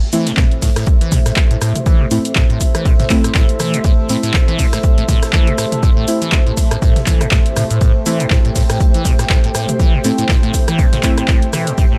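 A squelchy, resonant acid bass drives this raw, trippy acid house excerpt, its sawtooth riff in A minor running through phaser, overdrive, lush chorus and tape echo with a bright filter sweep and fast, decaying notes. At 121 BPM in 4/4 with a 56% swing on the sixteenths, a punchy analog kick sits up front from 0.4 seconds, joined by a tape-warm drum machine of handclaps, hi-hat, rim click, shaker and toms that sounds re-recorded in a small room. Far beneath, a very quiet acoustic arena kit adds hi-hat and a medium-tuned snare in a pumping hall. A dark, moody pad holds sustained chords with a sub octave, chorus, phaser and sidechain pumping, while deep, full-bodied chord stabs with detuned layers, chorus and tape echo punctuate the groove on a single A minor chord. From 1.0 seconds a faint, ethereal airy pad drifts in with ensemble chorus, tremolo and a long release, all under light reverb.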